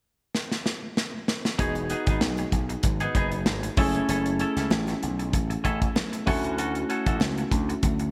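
Breezy and glossy, this polished 1980s jazz-funk pop excerpt opens with a punchy, up-front studio drum kit playing a fill with gated reverb from 0.3 seconds, before a gritty overdriven slap bass, a barky tine electric piano with lush chorus, a bright, clean semi-hollow guitar riff with subtle chorus and very quiet hard-handed congas join over Emaj7, F#m7 and Dmaj7 chords, all set in a lush hall and bright digital production.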